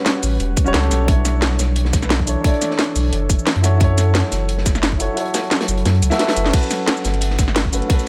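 Liquid drum and bass at 176 BPM in B minor, lush and dreamy, where a dark, mellow baby grand piano with dub echo and an ethereal, detuned pad pumping behind it float over a deep, round sub bass, a tight electronic kick that drops out from 5.2 to 6.5 seconds, an up-front kit of cracking snare, metallic hats, cabasa, crash and ride, and a gritty, saturated breakbeat kit in the background. A drum fill arrives at 6.2 seconds, and a very quiet, breathy flute-like synth lead appears at 2.0 seconds, as the chords move from A13 through Bm11 and F#m7 to Gmaj9#11.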